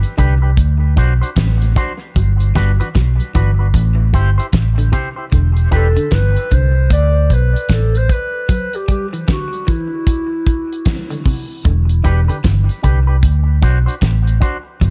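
Over a swung sixteenth-note groove, this meditative, hypnotic dub reggae excerpt pairs a round, foam-muted electric bass with a dry, damped 70s drum kit of fat snare, tight kick and hi-hat, both up front, while a bright, twangy envelope-filtered guitar and a scooped semi-hollow guitar playing chorused arpeggios in the background drift through dub echo, and a dark, distant clarinet takes the echoing melody from 5.7 to 11.3 seconds in a small, echo-heavy room.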